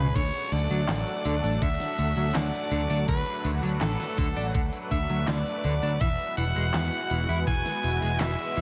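A drum fill opens this nostalgic, nocturnal synthwave excerpt at 82 BPM. A raspy, gritty alto saxophone carries the melody through digital delay over a lush, detuned sawtooth pad with chorus, phaser and sidechain pumping, while an amped, up-front picked electric bass also pumps underneath and a dark, clean fingered guitar riff with analog chorus and delay sits in the background. From 0.2 s a knocking, tape-warm electronic kick and a pop kit with fat snare, crisp hats, handclaps, tambourine and crash drive the straight 4/4 beat, and the harmony moves from D to Eadd9 at 6.0 s under light reverb.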